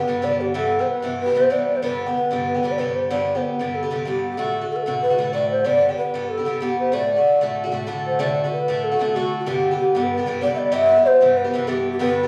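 This Celtic folk excerpt feels bright and lively, with a light swing in its eighth notes and a brisk common-time pulse. A long bamboo shakuhachi carries the melody from the first moment, its end-blown tone breathy and hollow, with a tongued chiff at the start of notes and softened highs. Beneath it, an Irish bouzouki sits up front in the mix, its picked double strings ringing with a metallic edge as it moves through G, E minor and D. The tune is stated once and begins again at 8.2 seconds, and the recording is cut from a longer performance. The two players sound like they are in one room together, bathed in a wet, large studio reverb.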